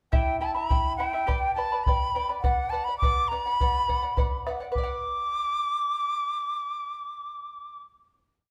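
Andean folk for an Andean ensemble, wistful yet festive in a straight 2/4, this brief complete piece sets an airy, end-blown quena up front with soft attacks and vibrato, spinning a motif-based melody in period phrases over chords moving from Em to G to Bm. A shimmering, fingerpicked charango with double strings and open chord shapes supplies rhythmic strumming beneath it, while a deep, dark bombo repeats its pattern until 5.0 s. The band plays live in one room with a wet studio reverb, and after the opening section the music settles onto a final chord from 4.8 s, the charango ringing until 8.5 s.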